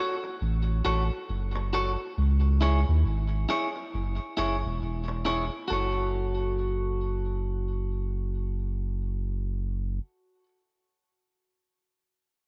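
A bright, clean electric guitar opens this slow, hypnotic roots reggae passage, its picked, twangy tone compressed and scooped, and trailed by tape echo. At 0.4 seconds a deep, round sine sub bass joins, with a fast attack and long sustain, sitting up front beside the guitar. The groove has a relaxed, swung sixteenth-note feel in 4/4 that gives the meditative mood a gentle lilt. The harmony moves between two minor chords, then returns to the opening chord as a new section begins at 5.7 seconds. A moderate echo-chamber reverb wraps the whole mix in a spacious room, and the clip is cut from a longer piece.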